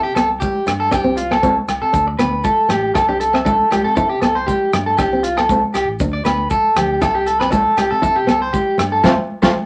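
A wet club reverb gives this short, danceable highlife clip a lively sense of space, with a twangy, slightly broken-up electric guitar up front playing picked arpeggios over a dark, full-bodied fingerpicked nylon-string guitar and a punchy fingered electric bass. A damped 70s drum kit with a fat snare and tight kick enters at 0.2 seconds alongside ringing agogo bells and grainy maracas in the background, and high-tuned, vintage-sounding congas join at 0.4 seconds. The joyful, lightly swung groove moves through C, F and D minor harmonies before the band hits an accent at 9.0 seconds.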